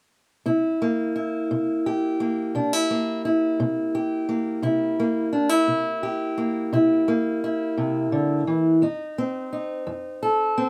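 Close, detailed miking with light reverb puts a boxy, parlour-sized fingerpicked steel-string acoustic guitar up front in this gritty, soulful acoustic country blues fragment, which plays alone from 0.5 to 10.7 seconds at a slow 57 BPM in a straight 12/8, is tuned to A4 = 435 Hz, and rests on a C7 chord before moving to F7 at 8.8 seconds.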